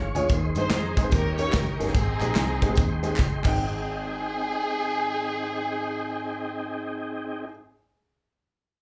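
A swung 4/4 groove drives this uplifting, reverent slice of uptempo gospel heard live through a club PA, with a tight, bright-cymbaled drum kit playing a fill at 3.2 s before stopping at 3.5 s, tambourine and handclaps in the background, a dark, round fingered electric bass, a boxy grand piano with audible action noise and slapback echo, a smooth tonewheel organ with key click and slow rotary speaker sustaining chords, and an expressive bowed string section carrying the melody from 0.6 s with vibrato and portamento.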